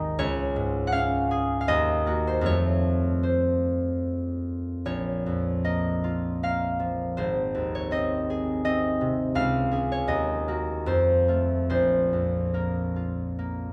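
A fingerpicked concert harp, ringing and up front, plays alone through this gentle, wistful classical excerpt in a flexible rubato 3/4, ranging from Ab1 to Gb5 and arriving on a Bb5 chord at 11.7 seconds, all set in a moderate recital-hall reverb.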